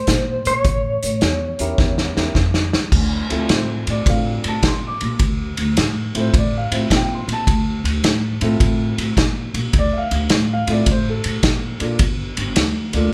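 This brooding, smoky electric blues shuffle in D minor moves at 106 BPM in 4/4 with a swung eighth-note feel. An electric guitar through a small old amp carries the melody with tremolo and a slightly broken-up, compressed, picked tone, but it is heard only briefly at the opening, starting before the band's first chord and continuing into an A7b9 chord before falling away at 2.3 seconds. A thumpy pizzicato upright bass with gut strings sits underneath throughout, while a vintage drum kit sits up front with a punchy kick, medium-tuned snare, hi-hat, ride and crash cymbals in a pumping small-room sound with a rolled-off top. A dark upright piano with a mellow, woody voice enters at 1.6 seconds to provide accompaniment, and a drum fill leads into a long stretch on Dm7 beginning at 2.9 seconds before the harmony moves to Gm7 near the end. The band plays live in one room with light reverb.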